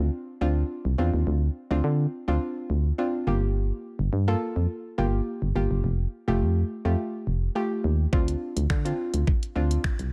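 A soft, rounded pluck and a punchy, dark FM bass open this confident, bittersweet dance-pop fragment together, both pumping with sidechain in a straight four-beat pulse. The pluck blends triangle, sine and sawtooth tones with a noise layer and a filter sweep, its gentle, quickly decaying notes thickened by chorus and sitting close to the listener as accompaniment. Beneath it, the bass has a fast attack and a digital, rounded weight, held up front as the low anchor. The harmony moves from Dm7 through Gm7 and Fadd9 before returning to Dm7. At 8.1 seconds a layered, overdriven electronic drum kit arrives up front with finger snaps, hi-hat and a knocking kick, sounding re-recorded in a small room. A digital ambience surrounds the whole brief passage, which is cut from a longer piece.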